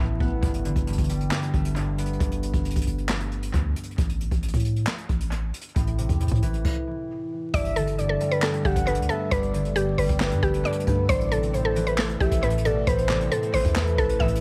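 Steeped in vinyl crackle and echo-heavy small-room ambience, this wistful yet triumphant half-time trap excerpt at 135 BPM in G major pairs a fingerpicked, ringing concert harp and a deep, boomy 808-style bass with an up-front jazz brush kit that enters at 0.2 seconds. After a stop at 6.6 seconds, it brings in a woody, round mallet-like synth pluck melody, a smooth portamento lead with vibrato, and a soft, breathy pad in the background at 7.5 seconds. Beneath them, the chords move from Gadd9 to A5, back to Gadd9, and on to Amadd9.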